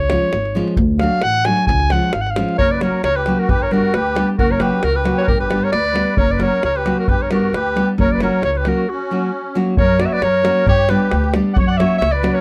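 In a swung 2/4 at 134 BPM, this bittersweet, virtuosic Balkan wedding-band fragment opens on a clear, classical-style clarinet solo up front over woody pizzicato upright bass, fingerpicked nylon-string guitar and a deep, close, dry davul, before a reedy, shimmering musette accordion joins at 2.6 seconds, and a brief break at 8.9 seconds leads into a final pass, all in light reverb.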